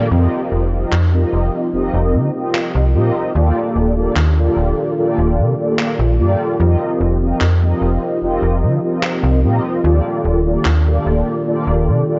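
Faded and woozy, this vaporwave fragment drifts in a straight 4/4, cut from a longer piece. Mellow synth brass carries the accompaniment up front, its round, detuned sawtooth and square tones thickened by ensemble chorus and analog delay, with vibrato and a filter sweep. Beneath it, a warbly tape-like pad holds sustained chords in the background, slow to bloom with a long release, its nostalgic warble coloured by chorus, built-in reverb and 12-bit sampler grit. A slap-like FM bass sits forward with a snappy, metallic attack and tube saturation, while electronic handclaps enter at 0.9 s, sampler-style, gated and overdriven. The harmony alternates between F9sus4 and Ebmaj9#11 under a dark, cassette-tape production with light reverb and a muffled top end.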